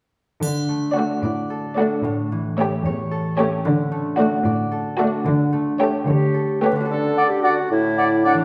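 Swaying in a gentle six-eight lilt, this short cut from a longer cinematic cue feels playful and whimsical, with a quirky, magical charm. A ringing concert harp spins arpeggios from 0.4 seconds, over a muted cello section holding the bass, and a close, dry triangle adds a bright glint at the very start. Muted violin sections carry a narrow, lush melody and a second line while a muted viola section fills in the accompaniment, their con sordino tone dark and veiled, blending into a bowed ensemble. Around 6.1 seconds a soft-attack clarinet comes forward with its own line; as the strings fall away, a mellow bassoon takes over the accompaniment and an airy silver flute and a distant oboe add brief upper lines beside the harp. A wet scoring-stage reverb gives the mix a spacious bloom.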